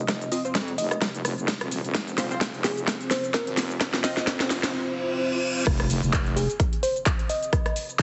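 A punchy, overdriven electronic kick sits up front in this gritty, bouncy bass house excerpt at 129 BPM, joined by a big-room dance kit with a huge snare, metallic hats, handclaps, rim clicks, shaker and crash cymbal, all pushed hard with overdrive and a 56% swing on the 16ths. Beneath it, a heavy, resonant wobble bass built from square and sine waves wobbles with saturation, chorus and sidechain pumping before dropping out at 6.5 seconds. A sparkling, bell-like FM electric piano carries the melody with chorus and tape echo, while a deep, moody analog pad holds sustained chords and pumps against the kick. In the background, a nasal, band-passed sawtooth chord stab with phaser and lush chorus plays until 4.2 seconds. A build-up runs with a drum fill and filter sweeps on the stab and pad, then a very quiet riser and reverse cymbal lead into the drop at 5.7 seconds, marked by an impact. The mix carries a moderate hall reverb and a heavily compressed, radio-like sound with the top end rolled off.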